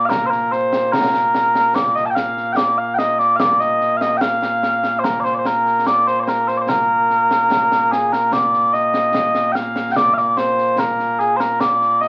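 Mellow small bagpipes open this stirring, proud piece of Scottish traditional pipe music, carrying a sweet, continuous solo melody with vibrato up front in Bb major at 73 BPM in a straight 2/4. From 0.1 seconds, concert snare and bass drums with dark cymbals sit further back in a small room, and the passage shifts into a new section at 8.3 seconds. Cut from a longer piece, it has the crackle of a very old 78 rpm record and a wet studio reverb.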